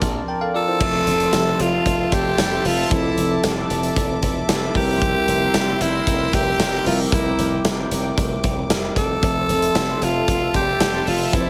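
A raspy, gritty alto saxophone carries the melody up front from 0.6 seconds, close-miked and edgy in a pop style over an uplifting, glossy 1980s-style pop groove in F major at 114 BPM in a straight 4/4. Beneath it, a bell-like tine electric piano plays clean, bright accompaniment, while a glassy slap bass adds punchy low notes. A big rock drum kit with punchy kick, medium-tuned snare, hi-hat, crash cymbal and tambourine sits mid-forward with a rolled-off top and big-room character. A sweeping, detuned sawtooth pad with soft attack and long release holds sustained chords high above, its filter swell and chorus giving it an evolving sheen. The harmony moves from Bbadd9 to Fmaj7, then C7/F, returning to Fmaj7 at 9.2 seconds, all wrapped in light reverb and small room ambience in this cut from a longer piece.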